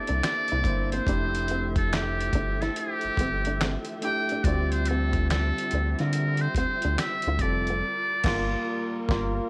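Set in a digital ambience, this introspective late-night R&B and neo-soul excerpt pairs a gritty, compressed sampler-style drum kit, re-recorded in a small room with a thumpy kick, and a round, deep analog bass up front beneath a brilliant, buzzy metal-muted trumpet that carries the melody with light vibrato and a breathy jazz tone. A barky, lightly overdriven tine electric piano heard through a combo amp plays accompaniment over a woody, lush string section bowed sul tasto, while a boxy flamenco guitar plays a thumb-plucked second line in the background until 7.8 s. The harmony moves from C9 to Fmaj9 at 1.1 s, then the band lands an accent on Gm7 at 7.8 s, with finger snaps, hi-hat and crash adding to the swung groove.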